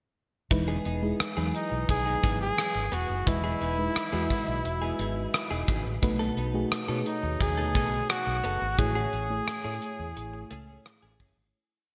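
Nostalgic and romantic, this short 1980s-style pop verse in E major at 87 BPM sets a mellow, chorused FM electric piano, a compressed funk-style clean guitar riff with chorus and delay, a round foam-muted fingered bass line with ghost notes, and a punchy gated drum kit with a big backbeat beneath a clear, close-miked flugelhorn melody that enters at 1.6 seconds with vibrato-laden call phrases, all bathed in lush hall reverb and bright digital polish before fading out from 8.8 seconds.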